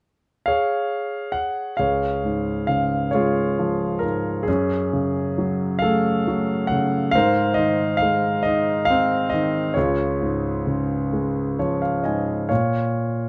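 In a rubato 6/8 lilt, counted at 45 BPM in dotted quarters, this tender classical fragment unfolds slowly in D-flat major. A single concert grand piano carries everything, entering at 0.5 s and sounding until 13.3 s across a span from Db2 to Ab5. Its tone is intimate and polished, with deep bass, long sustain and audible action noise that places the listener close to the instrument. The harmony moves from Db through Gbmadd9 and Abadd9, returns to Db, then turns toward Bbm, while a brief piano fill from 11.1 to 12.5 s decorates the close of the longer passage. Moderate studio reverb and a dark, warm production give the lyrical playing a soft glow while keeping the piano up front.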